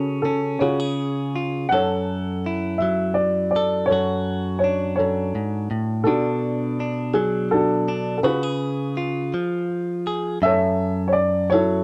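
A woody, mellow upright piano carries the melody from the first moment, alongside a twangy, picked electric guitar recorded direct and compressed for accompaniment, both sitting up front in this reflective, melancholic folk piece in F# minor. At a slow 55 BPM in 6/8, the harmony moves from F#m7 through Dmaj7/F#, Bm7 and C#7 before returning to F#m7 as a new section begins at 10.4 seconds. The sound is dry and close, like a 1970s studio, with a touch of light reverb, and this short passage is cut from a longer piece.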